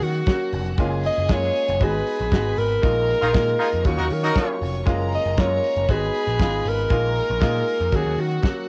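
A breathy, intimate alto saxophone carries the melody with vibrato and a soft attack, its tone colored by cassette tape and plate reverb, in this glamorous, danceable disco excerpt cut from a longer piece. Around it, a damped 70s drum kit with a fat snare and tight kick sits up front beside an overdriven, round picked electric bass, while a worn grand piano plays accompaniment and an earthy studio violin section adds a second line over a cycle of minor seventh, major ninth and suspended chords. A distant, roomy horn section punches in with stabs from 3.2 to 4.6 seconds during a band accent, all captured as a home recording on cassette with light reverb.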